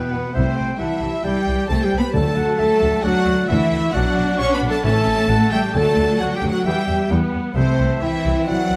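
In a straight 4/4 pulse, this heroic, triumphant cinematic cue moves with full orchestral weight through a brief stretch cut from a longer piece. A rich, close studio violin section carries the melody with smooth vibrato. It is shadowed by a darker, woody violin section, a distant roomy oboe, a soft-edged solo clarinet and a faint, airy flute section, all adding second lines. Beneath them, a lush symphonic viola section fills in the accompaniment in the background. A focused cello section and an up-front double bass section, entering at 0.1 seconds, anchor the bass. Mellow French horns hold sustained chords with trumpet stabs beside them, and a very quiet trombone section joins the held harmony at 0.3 seconds. Close, dry timpani played with medium mallets on calf heads sound from 2.1 to 6.4 seconds, while a moderate scoring-stage reverb gives the ensemble a spacious, polished sheen over a progression that opens on C and returns to C.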